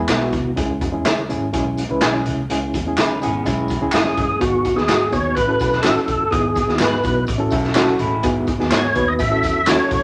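A fat, key-clicking tonewheel organ with overdrive, chorus vibrato and a slow rotary speaker takes the melody up front from 3.9 s in this joyful, danceable cut of uptempo 1960s-style soul at 125 BPM, moving from E and C#m into a section built on G#m7, A6 and Emaj7/G# chords. Beneath it, a reedy, lightly overdriven electric piano with fast tremolo comps throughout and adds a fill at 7.3 s, while a round, foam-muted picked bass and a gritty, saturated garage drum kit with a punchy kick pump in a small room. Two dark, slightly broken-up lo-fi guitars sit in the background, one playing a riff with spring reverb and the other stabs, joined by group handclaps, tambourine and very quiet, bright congas.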